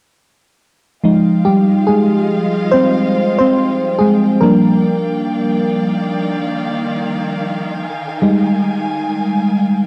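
An up-front FM electric piano, mellow and warbling with a vintage noise layer, carries this moody, sensual R&B excerpt at 71 BPM in F dorian. Its phased, fast-attack notes decay over a swung 16th-note feel as the chords move from Fm9 to Ebmaj9 at 4.4 seconds and back to Fm9 at 7.8 seconds. Beneath it, a warm studio string section holds bowed, sustained chords with vibrato, portamento and a smooth top, all colored by cassette tape grain and a small room's light reverb.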